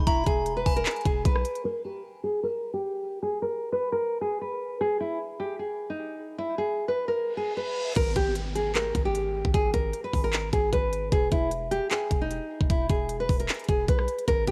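A half-time trap groove at 152 BPM drives this dark, hard-hitting hip hop excerpt, with a knocking kick, crisp hi-hats, handclaps, rim clicks and crash cymbal sitting up front alongside a punchy, heavy sine 808 bass with a noise layer. A fingerpicked nylon-string guitar carries the melody in a deep classical tone, finger squeaks audible through cassette-tape grit and tape echo, joined briefly by a tinkling FM synth bell with chorus. The bass drops out at 1.4 seconds and the drums at 1.6 seconds, leaving the guitar alone under a filter sweep until a reverse cymbal and downlifter lead the full beat back in at 8.0 seconds.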